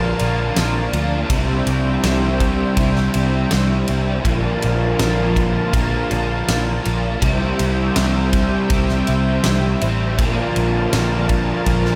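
Dreamy and hazy, this shoegaze and dream pop cut drifts in straight 4/4 as two overdriven guitars, one compressed with ensemble chorus and a hollow-body one with reverse reverb, play riffs over a lush, detuned sawtooth pad with chorus, a dark, foam-muted picked bass and a huge arena kit with a fat snare, punchy kick and ride, all soaked in a vast ambient reverb while the chords sway between Bbmaj7 and Cadd9.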